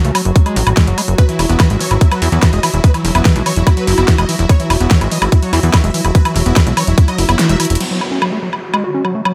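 Tight and overdriven up front, this alien, intense psychedelic trance excerpt pairs a tight electronic kick and a big-room dance kit of huge snare, hi-hat, crash and woodblock with a funky, plucky analog bass, a squelchy, gritty acid bass riff with distortion and delay, and a bright, morphing wavetable pad in the background, while a thick, detuned supersaw carries the melody from 1.2 s to 7.8 s; the kick drops out at 7.4 s and a drum fill leads into a short closing passage where an electronic downlifter enters at 7.8 s under a filter sweep on the pad.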